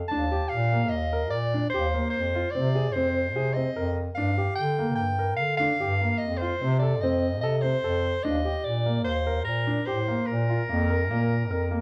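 Set in a straight, uneven 5/4 at 147 BPM, this short contemporary chamber excerpt feels restless yet hopeful, moving through chords from Eb to F7, Gm7 and back toward a closing Bb5. A breathy bass clarinet carries the bass line with jazz-inflected vibrato, while a punchy, forceful soprano saxophone sings the melody with light vibrato and a roomy, distant edge, both placed up front. Beneath them a concert grand piano plays natural-sounding arpeggios with deep bass, all set in a dark, warm recital hall with moderate reverb.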